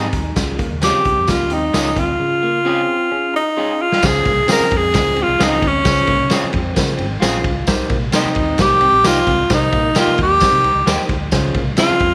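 Uptempo 1960s-style soul at 132 BPM, driving and passionate, where a breathy, close-miked tenor saxophone with scooped notes carries the jazz-style melody up front from 0.8 s over a gritty, saturated garage drum kit with a punchy kick and a fill at 3.1 s, a round, foam-muted fingered bass, a mellow tine electric piano opening with a brief fill, a jingly vintage tambourine, and two slightly broken-up electric guitars in the background, one twangy with a phaser riff and the other compressed on stabs, all moving from Db to Dbmaj7 and Cm7 in a small room with spring reverb.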